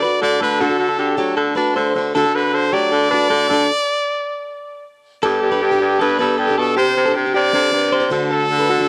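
Bright and nostalgic, this indie pop excerpt at 156 BPM puts a punchy trumpet melody with vibrato and scooped notes up front beside a clear, vintage baritone saxophone that carries the bass line from 0.2 s, while a picked plugged-in steel-string acoustic guitar with audible finger squeak and a twangy, compressed clean electric guitar playing tremolo-touched arpeggios fill in behind, the trumpet and both guitars colored by cassette tape and the whole home recording set in a light reverb, with a stop from 3.7 to 5.2 s before the chords move from D through Gadd9 and Csus2 back to D.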